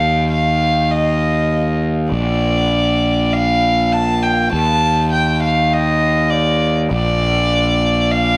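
Soaring and hopeful, this short post-rock passage in straight 4/4 pairs a single bowed violin, nasal and reedy with a gut-string, period-style tone, light vibrato and a touch of analog delay, with a growly, punchy fingered electric bass driven into fuzz by overdrive. Both parts play throughout the 8.4 seconds and sit up front, the violin carrying the melody high above the bass's low line as the harmony moves from Ebsus2 to Bb and back through Eb(b5, no3) to Bb. A moderate recital hall reverb with a hint of small-room ambience surrounds the pair, giving the passage a sense of space.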